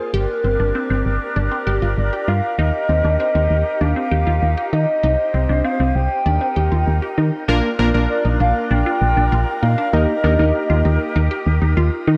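A straight 4/4 pulse at 98 BPM carries this cool, melancholic pop excerpt, cut from a longer piece, with the chords moving from Gm through Eb and Cm before brightening to Bb around 7.5 seconds. A punchy, round FM bass sits up front with a dark, digital tone, while a resonant blip pluck spins squelchy arpeggios through phaser, analog delay and shimmer reverb. Above them, a hollow, woody clarinet-like synth lead sings the melody with a warbling vintage vibrato, dressed in chorus, analog delay and shimmer reverb, and it stops at 11.2 seconds. A mellow flute section holds airy, distant sustained chords beneath, softened by shimmer reverb. At 7.5 seconds, warm analog keys with a detuned sawtooth edge and an evolving filter sweep join as accompaniment, adding chorus and shimmer reverb, all set in a moderate recital-hall space.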